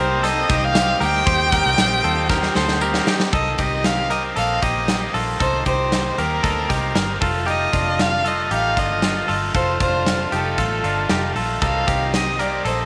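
A smooth, close violin carries the melody with even vibrato over a jangly indie pop groove at 116 BPM in C dorian, its mood bittersweet and restless in this cut from a longer piece. A twangy, compressed clean electric guitar picks arpeggios alongside a buzzy overdriven combo organ with spring reverb, a cranked stack guitar sitting in the background, a round, foam-muted bass with tube saturation, and an up-front rock drum kit with a tight kick in a bright stone room. A very quiet string machine of violas and a jingly tambourine color the opening until a drum fill leads into the next section at 3.3 seconds, where the chords move from Cm7 to F7 at 7.2 seconds under light small-room ambience.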